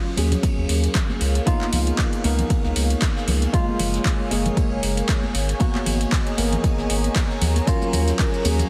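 A heavily compressed, radio-like sound with light reverb and a small-room ambience frames this short late-night deep house excerpt in Eb minor at 116 BPM, its 16ths carrying a gentle swing. An overdriven electronic kick and a round, deep analog bass with tube saturation sit up front, while a layered deep house kit adds handclaps, metallic hats and shaker, and ringing congas played with soft hands hover in the background. A worn, slightly out-of-tune tine electric piano with tape echo plays stabs from the very start, moving through Ebm9, Db13, Gbmaj9 and Abm9 before returning to Ebm9. Behind it, two moody pads, one full-bodied and evolving with chorus, the other detuned and warm with its own reverb, hold sustained chords and texture, breathing with sidechain pumping alongside the piano and bass. A soft brush kit with dark ride cymbal and fat snare murmurs underneath, and at 7.7 s a dry, close-miked vibraphone with fast motor vibrato enters for a brief melody between Ab4 and Bb4.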